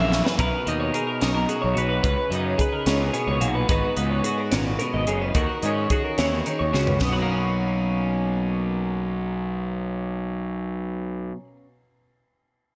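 This short excerpt has a bright 1980s-style digital sheen, with a lush hall reverb around it. It is intricate, playful math rock and midwest emo in 6/8 at 72 BPM, set in B major and moving through Bmaj9, G#m7 and D#m7 before settling on Bmaj7sus2 when the second section arrives at 7.0 seconds. A twelve-string electric guitar spins clean, twangy arpeggios through lush chorus and digital delay, while a second twelve-string guitar, compressed and up front with a subtle chorus, fills in the accompaniment lower down. A fuzz-laden picked bass sits warm and overdriven underneath. A crisp fusion kit with a high-tuned snare, punchy kick and dark cymbals opens with a fill, plays under gated reverb, and drops out after another fill at 6.7 seconds, leaving the guitars and bass to carry the closing bars.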